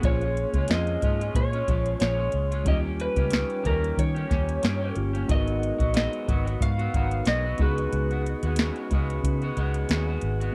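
Mellow and hazy, this short indie pop and bedroom pop cut drifts along at 91 BPM in 4/4 with a gentle 16th-note swing, moving through A#m7, D#7, G#m7 and C#7sus4. A soft vintage rhythm box sits up front with a deep kick, crisp snare and metallic hi-hats, joined by a dark, foam-muted fingered electric bass that sounds round and punchy. An electric guitar through a small old amp adds a bright, twangy, slightly broken-up picked accompaniment, lo-fi in character and soaked in lush chorus and vibrato. Behind it, a worn tine electric piano plays clean and a little out of tune, as if through its built-in speakers. The electric slide guitar carries the melody, played with fingerpicks, compressed and lightly gritty, with subtle chorus and tape echo, before it stops at 10.2 seconds. The whole has the dry, close feel of a 1970s-style studio recording with digital ambience.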